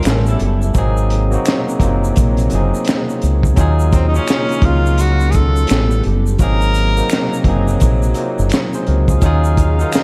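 A lightly reverberant studio sound frames this soulful, smooth neo-soul R&B excerpt at 85 BPM with a swung sixteenth feel, where a crunchy breakbeat kit with a high-tuned snare and tight kick sits over a deep, round fingered electric bass up front, a barky, lightly overdriven tine electric piano and a dark string section playing soft sul tasto chords in the background move through A9, Ab9 and Ebm11, finger snaps and an egg shaker tick quietly, a lo-fi electric guitar with ensemble chorus appears only for the first 0.7 seconds, and a breathy, whispered tenor saxophone with diffuse ambient delay carries the melody from 3.9 to 7.4 seconds.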